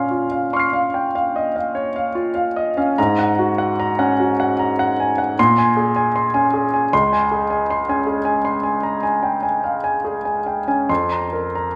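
Mysterious and nocturnal, this brief excerpt of impressionist solo piano drifts in an unhurried 5/4 with a free, rubato feel. A clear grand piano plays alone throughout, ranging from deep bass notes up into the high treble. Its sound is intimate and placed up front, with long sustain and the mechanical noise of the action audible beneath the notes. The harmony moves through hazy, extended chords, opening on Bbmadd9, passing through Ab9sus4 and Bbm9, settling on Dbmaj7 at 6.9 seconds, and closing on an unresolved Fsus4. A moderate reverb, like that of a scoring stage, gives the polished tone a gentle halo, adding to the music's shadowy mood.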